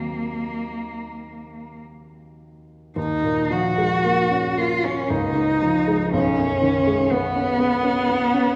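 Wistful and hazy, this fragment of an impressionist classical duo in rubato 3/4 sets a single bowed cello carrying an expressive melody with vibrato and portamento over an intimate baby grand piano accompaniment whose natural tone lets its action noise through, both heard from further back in a concert hall whose long, wet reverb blurs the shifting extended chords.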